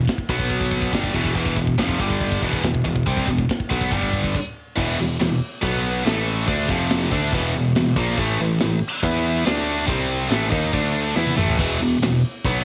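A home cassette recording with light reverb and a small-room feel carries this dark, relentless heavy metal fragment in E minor at 141 BPM, cut from a longer piece. An up-front, double-tracked, high-gain guitar riff with bright distortion and tape coloring drives it, a growly picked electric bass holds the low end, and a tight acoustic kit with bright cymbals, a medium-tuned snare and a tight kick plays beneath. The band halts for a stop at 4.3 seconds, comes back in with a power-chord passage at 4.8 seconds, and a drum fill at 11.2 seconds tips it into a final return of that section.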